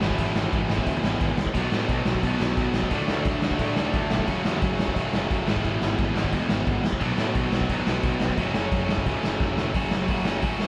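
Captured as a band playing live in one room with light reverb, this urgent, raw punk rock cut from a longer piece puts a punchy, gritty garage drum kit up front with a medium-tuned snare and crash cymbal, while a crunchy overdriven guitar and a tight distorted guitar pick out bright riffs in the background over a growly fuzz bass, the chords cycling from E/G# through Bm to F#m before a drum fill at 9.4 seconds.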